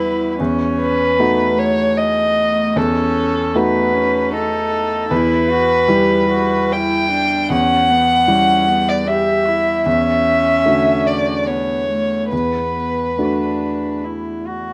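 Neoclassical piano and strings in E dorian, fragile and reflective, moving at 75 BPM in 3/4 with an uneven, rubato pulse and chords passing from B7/E through Emadd9 to D6/E. A dark, woody violin carries the melody with vibrato and a slapback echo, stopping at 14.0 seconds, while a cello played sul tasto traces a pure, floating second line with the same echo. Beneath them an intimate concert grand gives accompaniment with deep bass, long sustain and audible action noise, all under light reverb in an outdoor recording cut from a longer piece.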